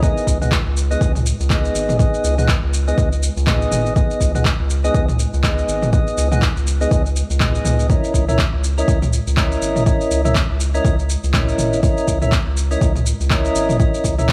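An overdriven electronic kick drum, deep and set in a small room, drives this earthy afro house piece at 122 BPM with a swung 16th-note feel in C# dorian. A dark, percussive tonewheel organ plays mellow stabs through a slow rotary speaker, digital delay and sidechain pumping. Beneath it, a round analog bass of square and sine tones with a filter pluck also pumps, while a layered deep house kit adds handclaps, shaker and toms, all under light small-room reverb as the chords move from G#m to C#m69 at 7.9 seconds.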